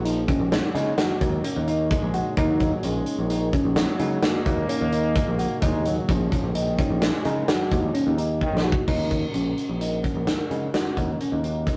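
The sound is rough, like a rehearsal room, with warm saturation and a moderate studio reverb. This is a tense, intricate progressive instrumental for band, cut from a longer piece and set in an uneven 7/4 at 129 BPM in Eb minor, opening on an Ebm7 chord. A big, mid-forward acoustic rock kit sits up front with a tight kick, a medium-tuned snare, hi-hat and crash cymbal, and a rolled-off top. A growly picked electric bass anchors the low end, while a bright, bell-like tine electric piano plays clean arpeggios through a phaser. A very quiet, shimmering pulse-width pad adds soft, sustained chorus, and a clear trombone with light vibrato carries a smooth second line in the background until 8.8 seconds. A drum fill at 8.4 seconds leads into a new section at 8.9 seconds.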